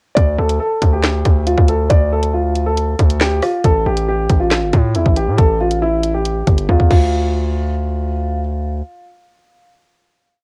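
A distorted, saturated 808-style bass with long sub-bass notes that follow the kick and slide in pitch anchors this tense, dark drill track at 138 BPM in half-time D minor, alongside a mellow, vintage concert grand piano looping a melody through cassette tape and tape echo, and a drill kit with a hard-clipped kick, skipping bright hats and clap-layered snare that closes on a fill at 6.7 seconds before the piano and bass ring out into a final hit until 8.8 seconds, all in a dry, close home cassette recording.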